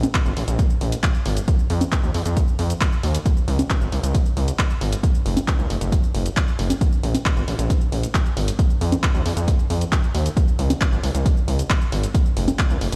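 Dry at its core yet heard through a big sound system in a bare stone room, this 13-second cut from a longer uplifting trance piece runs at 135 BPM in straight 4/4, tuned to A4 = 437 Hz, with an emotional, euphoric mood. An aggressive, saturated synth bass sits up front between Gb1 and F2, blending sawtooth and sine tones with oscillator sync and a resonant filter pluck, all pumping under sidechain compression. A punchy analog drum machine supplies congas, handclaps, hi-hat and shaker throughout, while an up-front electronic kick drives from 0.1 to 12.7 s; both drum parts were re-recorded in a small room.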